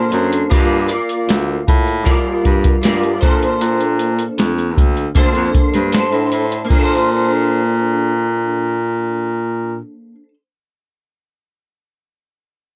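A sunny, laid-back slice of indie and bedroom pop, cut from a longer piece, moving at an easy 78 BPM in 4/4 with a straight feel in Bb major. An electric guitar through a small old amp carries the accompaniment from 0.0 to 10.3 seconds, its picked tone bright, twangy and slightly broken-up, thickened by ensemble chorus and a vibrato effect. Underneath, a clear baritone saxophone takes the bass role in a low register, sounding distant and roomy yet up front. A soft vintage rhythm box with a deep kick, tonal snare, metallic hi-hats and a crash cymbal plays from 0.1 seconds until it stops at 6.9 seconds, re-recorded in a small room. The harmony drifts from Bbmaj9 to Gm7 and back, and the production is dark and dry, with little reverb.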